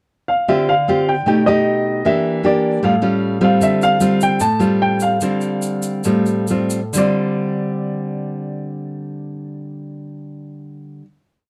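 Bossa nova in D minor, smooth and intimate, a complete short piece at 131-153 BPM that slows down between 3.6 and 6.9 seconds before settling on a held final chord. A dark, mellow baby grand piano carries a motif-based melody in balanced phrases, while an up-front nylon-string guitar supplies warm, fingerpicked accompaniment with thumb bass and syncopated plucked chords, moving from Dm7 through Em7b5 and A7alt. A grainy, bright egg shaker sits close in the mix from 3.6 to 7.0 seconds, all within a moderate studio ambience and a dark production.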